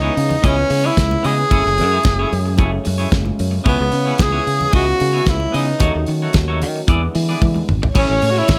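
A breathy, close-miked tenor saxophone carries a sultry, glamorous disco melody up front, its soft attack wrapped in slapback echo, over a growly fingered electric bass and a damped 70s drum kit with a fat snare and tight kick that rounds off with a fill at 7.4 seconds. A clean, twangy electric guitar and congas join a mellow French horn section holding sustained chords in the background, while the harmony moves through minor sevenths toward an E7. A lush, distant string section slides in at 7.9 seconds on a second line as this brief fragment, set in a small room with light reverb, lands on Amaj7.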